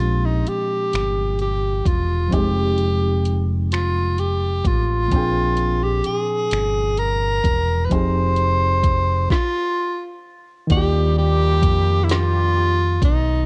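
A breathy, close-miked tenor saxophone with scooped notes carries a yearning, late-night melody up front over a barky, lightly overdriven reed electric piano and a dark, round fingered electric bass in this six-eight R&B fragment, with a produced, tape-toned drum kit of knocking kick, woody snare, hi-hat and finger snaps entering at 0.5 s, a stop at 9.3 s, and a loose horn section with vibrato and octave doubling adding quiet background stabs from 10.7 s, the whole heard in light reverb with the homespun character of a cassette recording.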